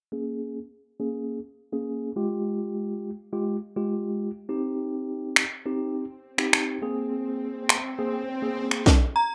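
A rough home-demo sound sits in a small, reverberant room, giving this brief dance-pop fragment at 103 BPM a euphoric, summery glow in Ab major. A mellow tine electric piano carries the accompaniment from the start, its clean, warm tone heard as if through built-in speakers, pumping under sidechain compression while a low-pass filter sweeps across it through the chords Bbm7, Fmadd9, Eb6 and Abadd9. At 5.4 seconds a house drum kit arrives up front, with a punchy kick, a cracking snare and finger snaps, its layered electronic sound overdriven and re-recorded in a large room. An electronic swell enters beneath them from 6.8 seconds. Moments after the piano and drums finish, a vintage FM synth chime rings out a single high Bb at 9.2 seconds, its inharmonic, warbling tone shaped by ensemble chorus, tremolo and plate reverb.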